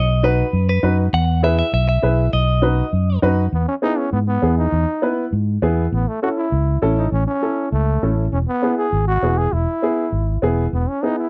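Joyful and festive, this short excerpt from a longer Latin piece in E major runs at a brisk 200 BPM with a straight 4/4 feel, captured in a dry, close 1970s-style studio sound. A bright, twangy clean electric guitar carries the opening melody with spring reverb and slapback echo until 3.2 seconds, over a dark, round fingered electric bass and a woody, polished upright piano accompaniment. At 3.5 seconds a raspy, growling trombone steps up front for a gritty solo with vibrato and a smooth top, riding chords that move from E to A and back to E.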